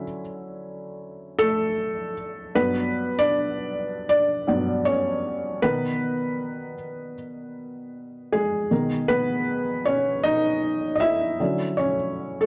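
A dark, warm production wraps this recording in a moderate studio reverb that adds a gentle glow of room around it. It is a cosy, nostalgic hip hop piece at 78 BPM in 4/4, swung on the sixteenths and cut from a longer work. A single felt-muted upright piano plays solo throughout, sitting up front with a mellow, intimate tone, short sustain and the audible clatter of its action, while a low-pass filter further rounds off its top end. Ranging from G2 to E5, it moves through Dmaj9, Gmaj7 and Bmaj7 before shifting to Bmaj9 at 8.7 seconds and returning to Dmaj9 at 11.4 seconds.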